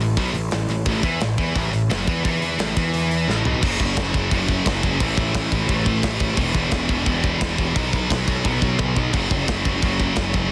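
Heavy and aggressive, this short heavy metal excerpt in a straight 4/4 is driven by a bright, scooped, high-gain guitar riff, double-tracked and up front, over a growly fuzz bass with overdrive. A tight, mid-forward acoustic drum kit with a big-room character, medium-tuned snare and a soft-clipped kick pounds through crash, hi-hat and toms, with fills at 3.3 and 8.8 seconds. The riff moves from A5 into a new section at 3.6 seconds, cycling through F#5, A5, E5 and B5, all in a dry, dense and heavily limited modern mix.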